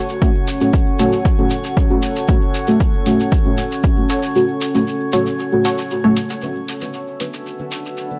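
A deep, mellow chord stab sits up front in this meditative dub techno excerpt at 116 BPM, its detuned, dark tone treated with chorus, phaser, dub echo and sidechain pumping, moving from F#m to Bm at 6.4 seconds as a filter sweep moves across the stab. Beneath it, a punchy, overdriven electronic kick drives the groove until 3.9 seconds, while metallic, tape-warm hi-hats and a grainy, close shekere keep time. A muted, filtered dub chord stab echoes in the background, a moody, evolving pad holds sustained chords in reverb, and a glassy texture of drifting overtones floats alongside it, all set in a dry, gritty mix with transformer saturation.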